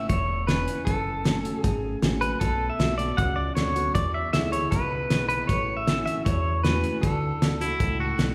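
Set in the wet bloom of a concert-hall reverb, this short, sunny, down-home honky-tonk and classic country excerpt pairs an up-front pedal steel guitar carrying the melody with slide and volume swells over a bright, full-bodied picked dreadnought acoustic, a fat sawtooth analog bass with a moving filter, and a cloth-damped, muffled drum kit with a fat snare and tight kick, before a scooped, twangy electric guitar slips in a second line at 7.6 seconds.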